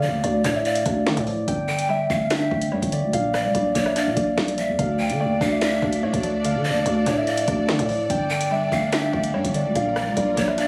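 Captured on a phone in a small room with vinyl crackle and compression, this menacing, cold drill excerpt at 145 BPM in half-time in D harmonic minor sets a bright, ringing, thumb-plucked Celtic harp melody over a breathy, unsteady pan pipe second line with tape echo, a woody, warbling mallet-like synth pluck with chorus in the background, and a growling, buzzy 808-style bass, while a barely audible downlifter sounds until 1.5 seconds, an electronic drill kit with knocking kick, sharp snare, bright hats and rim clicks kicks in at 0.2 seconds, and a lush, clear symphonic string section brings sustained bowed chords from 4.8 seconds.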